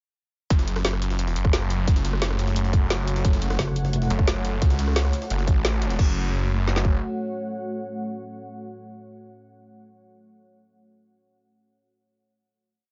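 A short, complete piece of dark technical drum and bass opens at 0.5 s straight into the drop, with a tight, up-front kick and woody snare arriving alongside a snarling distorted saw bass that growls through chopped, aggressive phrases. Layered beneath are a second electronic kit of metallic closed hats, rim clicks, snare and crash, and a very quiet, gritty jungle-style looped breakbeat with a pitched-up, high-tuned snare and edits, heard as if from a large room. From 1.8 s a deep, moody ambient pad rises behind the low end, holding sustained chords with chorus, its own built-in reverb and sidechain pumping. Briefly in the middle, a metallic FM wobble bass cuts in with modulated phrases of changing wobble speed, answering the saw bass. The drums and saw bass fall away by about 7 s, and the pad then rings out the final chord by itself, giving the mechanical, dry mix a dark and somewhat dull-topped close.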